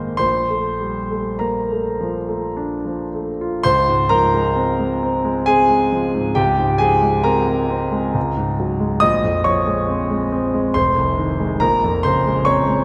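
Hazy and luminous, this impressionist classical passage for solo concert grand piano is cut from a longer piece and drifts in 3/4 at a slow, rubato pace between 49 and 74 BPM. The piano sits up front with a clear, natural tone, a deep bass and long sustain, spanning F1 to Eb6. It opens in Bb major on a Bbmaj7 chord, then at 3.7 seconds moves into a second section in Db lydian, beginning on Dbmaj7. From there the harmony passes through Bbm9/Db, Absus2/Db and Fm7, returning to Bbm9 before the piano stops at 12.8 seconds. A generous concert hall reverb with a 2.0 second decay surrounds the instrument and adds to the hazy atmosphere.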